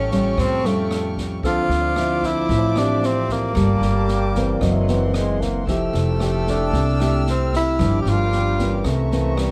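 A straight, relaxed bossa nova groove at 113 BPM in 4/4 and F major carries this sunny excerpt. An open jazz drum kit with a boomy kick, rim click and snare sounds from a small room, while a thumpy, woody upright bass sits up front beside a full-bodied, fingerpicked nylon-string guitar with audible finger squeak. A mellow tenor saxophone leads the melody until 8.9 seconds, using subtone, scooped notes and vibrato in plate reverb, over reedy chamber violins that hold sustained chords high above. From 1.4 seconds, a whispered trombone adds a second line in the background, and a warm grand piano with audible action noise accompanies until 5.9 seconds.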